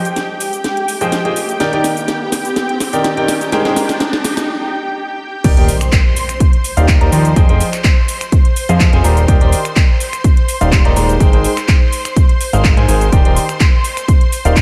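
Piano house at 125 BPM in Eb major, this joyful, uplifting clip, cut from a longer piece, moves with a light swing and cycles through Fm9, Ebmaj7 and Abmaj9 chords. A silky, detuned analog string pad holds sustained chords from the start, with ensemble chorus, vibrato and sidechain pumping. A house drum kit plays a fill through most of the build-up, with a cracking snare, metallic hats, handclaps, finger snaps, shaker and crash cymbal in a small room. A brilliant, vintage-toned grand piano enters at 1.0 seconds with a riff, carrying long sustain, tape echo, a low-pass filter and sidechain pumping, while an electronic riser climbs in the background toward a brief break at 4.5 seconds. At 5.4 seconds the drop lands with an impact as a punchy, up-front electronic kick and a fat, nasal analog bass arrive, the bass saturated through tubes and pumping with sidechain compression. A lush hall reverb of about 2.0 seconds gives the mix a dreamy, soaked quality.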